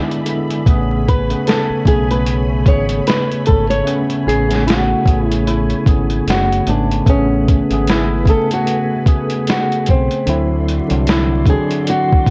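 Mellow and nostalgic, this swung lo-fi hip hop excerpt sets a clean tine electric piano with cassette-tape softening and a silky, slow-blooming string machine over a muffled, thumpy sampler-style drum kit with 12-bit grit, while a dark, round fingered electric bass enters at 0.7 seconds and a fingerpicked flamenco guitar carries the filtered melody from 1.1 seconds, all wrapped in light reverb and vinyl crackle.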